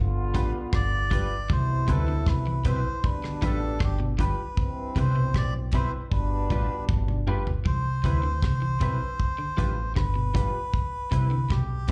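A deep, round fingered electric bass sits up front with a damped 70s drum kit carrying a tight kick and sampler grit in this laid-back, uplifting roots reggae excerpt at 78 BPM in C major, moving between G7 and Cmaj7. A reedy, breathy melodica carries the melody over a bright, twangy clean guitar with chorus, boxy grand piano stabs with echo, and a slightly broken-up guitar playing arpeggios in the background from 1.5 seconds. A clear trombone section with light vibrato plays a second line until 7.2 seconds, just as a drum fill leads back into the repeated section, all heard like a live gig through the venue's PA onto cassette with club reverb.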